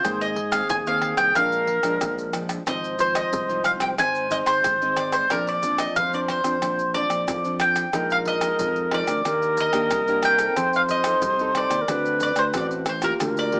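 Nostalgic and yearning, this 13.6-second cut from a longer samba and choro piece moves at 91 BPM in a straight 4/4, with a woody, double-strung mandolin carrying the melody up front through a plate reverb while an airy baroque flute with vibrato and a crisp attack sings a second line beside it. Underneath, a full-bodied, fingerpicked nylon-string guitar in classical style supplies the accompaniment, a bright, direct fingered electric bass anchors the low end, and close, dry, hard-handed maracas, tight surdo, pandeiro and tamborim drive the percussion. The harmony drifts from Abadd9 through Bb7 and Ebmaj7 to F7 and D7, all heard in a moderate studio room with a small-speaker character.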